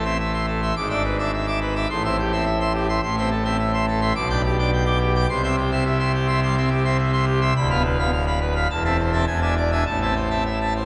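Brilliant and majestic, this short passage from a classical organ toccata, cut from a longer piece, moves in a straight 4/4 pulse. A solo pipe organ plays on full organ throughout its 10.9 seconds, its mixtures giving a bright, ringing edge to a romantic voicing that reaches from deep pedal notes up into the high treble. The organ sits up front, while a wet church reverb with a long decay of 2.7 seconds fills the space around it. The harmony turns through minor-key progressions, passing from A minor through C and a diminished chord before an E7 leads back home to A minor at 9.9 seconds. A layer of vinyl crackle and a dulled top end lend the recording an aged, dusty character.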